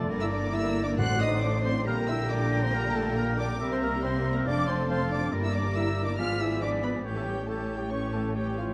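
A lush, expressive violin section carries the melody in this graceful, cheerful classical-period orchestral fragment at a quick 138 BPM with a rubato feel, as a rich background violin section, a mellow, distant clarinet, an airy silver flute high above and a present cor anglais weave second lines over smooth violas, dark, punchy French horns holding chords, intense cellos and even double basses anchoring the bass, and calf-headed timpani sounding only from 1.0 to 1.6 s, all in a moderate scoring-stage reverb with a dark production that moves from G minor toward a closing A7.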